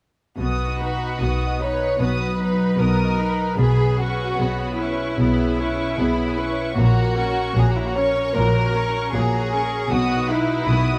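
Up front, a muted violin section carries a close, lightly vibrato second line in the middle register, veiled by the mute and sitting louder than the higher violins that sing the melody softly above it. This is a slow, tender romantic movement for symphony orchestra in B major at 76 BPM in 4/4, played with a flexible rubato feel and cut from a longer piece. Muted violas add rich, soft-attacked accompaniment, while a concert harp threads ringing fingerpicked arpeggios through the texture. Underneath, muted cellos sit in the background with a dark, smooth top, and muted double basses anchor the low end with a lush, bowed weight. All six parts play together from 0.4 to 11.0 seconds, moving through B, C#m7/B, F#/A# and back to B, bathed in the wet reverb of a scoring stage.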